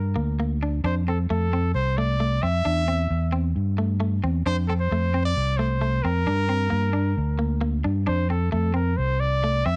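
A lightly swung sixteenth-note feel in four drives this carefree highlife guitar band passage, cut from a longer piece. A fingered electric bass holds the low end from the start, its tone dark, round and amped, sitting up front in the mix. At 0.2 s a semi-hollow electric guitar joins with clean, picked, compressed accompaniment, its hollow-body voice given a gentle sheen of plate reverb and cassette tape color. From the start, a clear trumpet carries the solo melody with light vibrato, close-miked and forward in a pop style, sharing that same tape and plate treatment. The harmony moves from Gm to F, then C/E, back to F, Gm and F again. A light room ambience and the homespun cassette character give the whole a warm, intimate glow.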